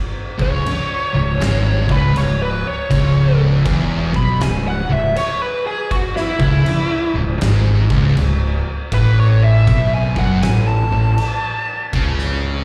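Heavy and sludgy, this stoner and doom metal excerpt from a live club gig features a compressed fuzz lead guitar soloing with wah and slapback echo over two dark, picked fuzz rhythm guitars churning a background riff, a growly overdriven fingered bass, and an oversized low-tuned drum kit with a punchy kick, fat snare and dark cymbals in a pumping stone-room sound, moving from C#m to F#madd11 at 8.9 seconds.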